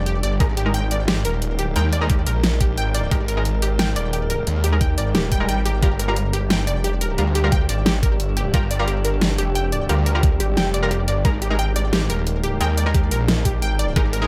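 A mix set in light reverb, with the kick and drums up front and a metallic drone lurking in the background of this dark, aggressive technical drum and bass excerpt at 177 BPM in 4/4. A snarling, growling saw bass, distorted and compressed with a moving notch, drives the low end from Eb1 to Eb2 under an overdriven knocking kick and a layered dubstep kit with a huge snare and bright hats. An eerie, inharmonic FM drone holds sustained chords with chorus and sidechain pumping, while a lush, detuned unison pluck spins arpeggios through delay and a filter sweep. Bold orchestra-hit-like stabs, ringing with ring modulation and their own reverb, enter at 0.4 seconds and cut through the harmony, which moves from Absus2 to Gm7 at 5.8 seconds and back to Absus2. A brief electronic swell sounds in the background just before that change, at 5.3 seconds.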